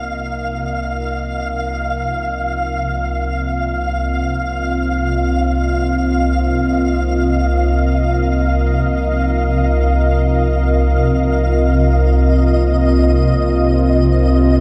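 Dark ambient drone, cavernous and desolate: a deep, ominous rumbling drone with phaser and its own reverb sits up front beneath a moody, full-bodied, detuned analog pad holding a Bbsus24/C chord through chorus, while a quieter, flickering granular texture hovers high above, all three sustained for the full 14.6 seconds of this fragment of a longer piece inside a huge ambient reverb.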